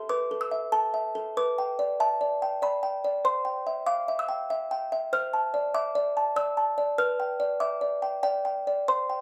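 Innocent and tender, this short classical lullaby in 3/4 at 96 BPM features a solo music box, a large, delicate and tinkling instrument, slightly out of tune and tuned to A4 = 436 Hz, whose airy plucked notes sit up front through close, detailed microphones and light reverb as its melody moves through chords of G/B, C, Dm7/C and G7/B across 9.2 seconds cut from a longer piece.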